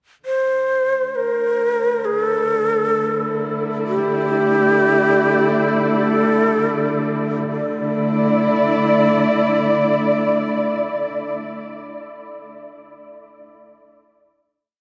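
Unsettling and cavernous, this short ambient piece opens with a dark, woody cello section that fades in from 0.2 to 7.5 seconds on slowly shifting sustained chords with vibrato, while a breathy, close-miked shakuhachi with a soft attack carries an expressive, motif-based melody of call phrases through tape echo, the piece closing on a final chord from 7.5 seconds within a huge, wet reverb.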